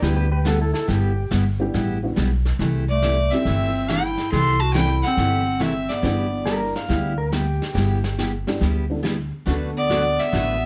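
Over a swung 140 BPM groove in G major, a vintage brush drum kit, a woody, thumpy upright bass up front, a full-bodied picked acoustic guitar and a jangly, detuned honky-tonk piano in the background carry this playful, cheerful western swing excerpt, while a clean pedal steel guitar with volume swells plays a second line at the start and again from 6.5 seconds, and an earthy, up-front fiddle takes the melody from 2.9 seconds alongside a raspy, growling clarinet under light reverb.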